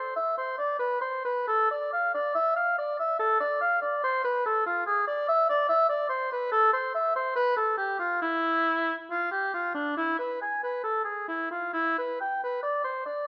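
In uneven, freely stretched rubato beats, this grave and solemn baroque-style fantasia, heard as an excerpt of a longer piece, features a lone oboe playing in a mellow, classical manner with vibrato between D4 and G#5, set in a roomy recital hall with a moderate 1.5-second reverb.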